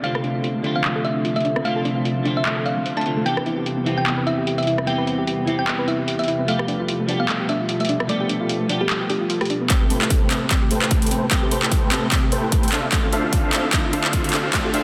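A tine-like, thumb-piano-style synth pluck carries a bright, euphoric future bass melody over clean picked electric guitar, an ethereal airy pad and soft background arpeggios, all pumping against the beat in a half-time swing, while metallic, overdriven trap hats, claps and rim clicks sit up front and a very quiet downlifter opens the cut. At 9.7 seconds the pluck melody gives way to a huge, thick detuned supersaw riff under a filter sweep, joined by a punchy layered kick and a barely audible deep 808-style bass as a drum fill and riser drive the build-up. The dense, heavily limited mix is bathed in a long, cavernous reverb, with chords moving from Dm7 through Cmaj7/E and G9 to Am9 before returning to Dm7.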